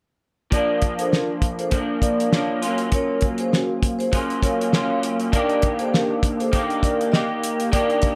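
Hazy and laid-back, this short excerpt of indie bedroom pop moves at 100 BPM in 4/4 with a gentle 16th-note swing, settling in Bb major. From 0.5 s, a cloth-damped acoustic drum kit sits up front and dry, its fat snare, tight kick and hi-hat given a thuddy, rolled-off top. An electric guitar through a small old amp carries the accompaniment, fingered and compressed with a slightly broken-up, lo-fi tone, analog chorus and a warbly pitch drift. A vibraphone played with medium mallets and its motor off adds a metallic, ringing second line, treated with lush chorus, tape echo and plate reverb. The harmony drifts from Bb to Gbmaj7 at 2.6 s and Ebmaj7 at 5.3 s, all held in a moderate studio reverb.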